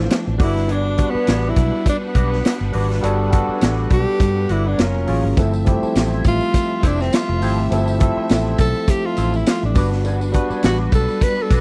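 A loose sixteenth-note swing in 4/4 drives this romantic, lush 1970s-style soul fragment, carried by a vintage drum kit with a punchy kick, a medium-tuned snare and hi-hat, rolled off at the top and sitting up front. A dark, round, foam-muted fingered electric bass sits close and prominent beneath it. Over the groove a breathy, close-miked tenor saxophone solos throughout in a clear jazz style with vibrato. A barky, lightly overdriven tine electric piano played through a combo amp supplies the accompaniment, while a twangy, slightly broken-up electric guitar plays a picked wah riff through a small old amp, lo-fi and in the background. Bowed studio strings add intense, vibrato-rich sustained chords from behind, moving from Gmaj7 through F#maj7 and Fmaj7 before returning to Gmaj7 at 9.8 seconds, and a jingly tambourine joins at 5.4 seconds, all captured in a dry, close studio sound.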